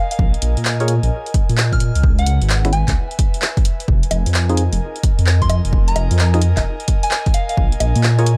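A dark, warm production with very little reverb frames this short, soulful cut of two-step UK garage, moving at 130 BPM in F minor with a skippy 16th-note swing. A breathy, airy pad and a soft, pure FM bell open together at 0.0 s. The pad carries chorus and sidechain pumping, while the bell melody, high in the F5 to F6 range, is coloured by chorus, phaser, digital delay and a gritty vintage 12-bit sampler edge. A punchy analog drum machine supplies bongos, finger snaps, handclaps and hi-hat. An up-front electronic kick and a deep, rumbling, saturated detuned saw bass sit heavy at the bottom from 0.2 s. From 0.8 s, a hollow, mellow organ stab with analog chorus and digital delay punctuates a Bbm7, Dbm7 and Fm7 progression that returns to Bbm7 near the close.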